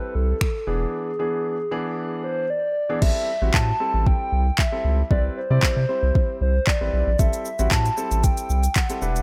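A hollow, woody synth lead with a clarinet-like voice carries the melody from the start, its mellow tone thickened by chorus and digital delay. Beneath it, a clear grand piano with audible action noise and sidechain pumping plays the accompaniment, while a round analog bass enters at 0.2 s and a smooth R&B drum kit with soft kick, handclaps, finger snaps and shaker arrives at 0.4 s. Together they shape a bittersweet yet confident dance-pop passage at 115 BPM in A dorian, moving through Am7, E7 and Cmaj7 in a dry, close sound.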